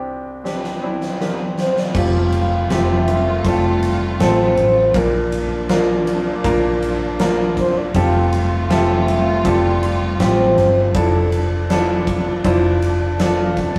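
Hopeful and heartfelt, this 80 BPM pop ballad excerpt in F major opens with a mellow, horn-like synth lead with chorus and vibrato singing over clear, up-front grand piano and a huge arena drum kit whose fill at 0.4 s leads to 1.9 s, when dark, round fingered bass and lush bowed strings in the background join across chords moving from Fadd9 through Bb to Dmadd9/F, all in a rough rehearsal-room sound with tube saturation and light reverb.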